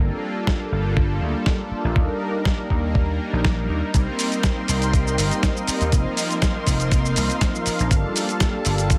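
A smooth, detuned sawtooth pad with a soft attack and a moving notch opens this groovy, cosmic nu-disco passage in G minor, sitting up front with chorus and delay alongside a punchy, amped electric slap bass. At 0.5 seconds a gritty, compressed sampler-style kit arrives, bringing hi-hat, shaker and a medium-tuned snare, joined by a thumpy electronic kick placed well forward in the mix. The groove runs at 121 BPM in 4/4 with a light swing on the sixteenths, while the harmony moves through Gm9, Ebmaj7, Cm7 and F7sus4 before returning to Gm9. From 3.9 seconds a dark, lush bowed string ensemble adds sustained chords with vibrato and a pumping sidechain feel, lying further back than the other parts. A digital ambience surrounds the mix of this short cut from a longer piece, giving the warm retro-leaning textures a spacious, starry sheen.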